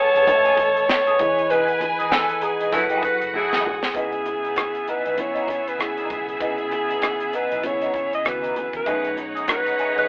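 Lush 1970s-style soul at 98 BPM in 4/4 with a 16th-note swing, this silky, cinematic excerpt sets a breathy, up-front alto saxophone with vibrato and a smooth top on the melody over chords moving from Amaj9 through Emaj7 and F#m9 to C#m9 and B13. A rich, distant studio violin section carries a bowed second line with vibrato, while a worn, slightly out-of-tune tine electric piano, lightly overdriven through its built-in speakers, supplies the accompaniment. An electric guitar through a small old amp plays a slightly broken-up, lo-fi picked riff colored by wah and tremolo, and a dark, foam-muted, round fingered bass sits in the background. A tight funk drum kit with a dry, high-tuned snare, tight kick, hi-hat and rim click drives the groove alongside bright, low-tuned congas played with hard hands. A clear pop-style horn section punches in with stabs from 2.7 to 3.8 seconds amid a band accent and a drum fill leading into the next section at 4.0 seconds. 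The whole band sounds as if playing live in one room with moderate studio reverb, filtered through a narrow telephone-like tone.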